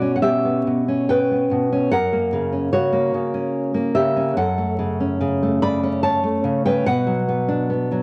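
A home-cassette sound frames this short recording, with vinyl crackle beneath it and a light reverb that places the playing in a small room. It is a romantic piece for solo classical guitar in 3/4, played with a rubato feel, and the cut is taken from a longer work. The nylon-string guitar sits up front and is fingerpicked, with a dark, acoustic tone that spans F#2 to B5 across its 8 seconds. Over this span the harmony moves from C#m7b5 to F# at 1.9 seconds, then to F#m and finally Bm. The mood is sunny and tender, carried entirely by the lone guitar in an intimate, homespun setting.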